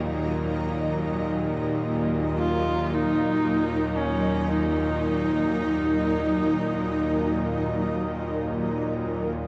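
A tense, sawtooth-edged bowed-like drone sits low in Eb minor beneath a cloudy, blurred granular pad, opening this dark, unsettling ambient drone piece in free time, with both parts drifting in on slow attacks and their own built-in reverb. At 2.4 seconds a husky horsehead fiddle enters up front, its single bowed line rich with vibrato and portamento and trailed by tape echo, until it stops at 8.8 seconds. A huge, wet reverb and dark production wrap the short passage, which is cut from a longer piece.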